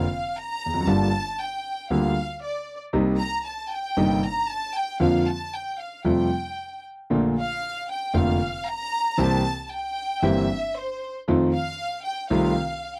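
A focused violin section carries the spotlight in this passionate, dramatic tango fragment, its bowed ensemble tone shimmering with vibrato as it plays a second line high in its register from the opening until 12.9 seconds. Beneath it, a concert grand piano supplies the accompaniment with a smooth, vintage character and a deep bass that reaches into the instrument's lowest range, stopping at 12.5 seconds. Both parts sit up front in a dry, close 1970s-style studio sound touched by light reverb. The rubato feel lets the phrasing breathe, while the harmony moves through Gm7, Cm7, Bbmaj7 and C7 before settling on F7, leaving the passage poised at the edge of what follows. Cut from a longer piece, it plays as a single brief section of about 13 seconds.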